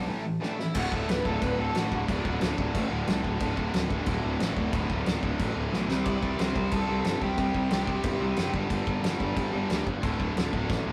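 Punk rock at 181 BPM in a straight 4/4, this short excerpt cut from a longer piece feels rebellious and rowdy from the first beat. Up front sit a growly, fuzz-laden picked electric bass and a loose indie drum kit with a fat snare, tight kick and dark cymbals, the kit sounding distant and roomy, with fills at 0.4, 5.7 and 10.7 seconds. Behind them, three picked rhythm guitars play the riff: a bright overdriven electric, a hollow-body semi-hollow with a warm tone, and a scooped, double-tracked high-gain guitar that joins at 0.7 seconds. A dark, distorted, bluesy lead guitar cuts in with melodic lines from 0.4 to 2.6 seconds and again from 6.0 to 8.5 seconds. The chords move from A5 through D5, C5 and G5 before returning to D5. Light reverb and a rough rehearsal-room sound with warm saturation give the whole track a raw, live edge.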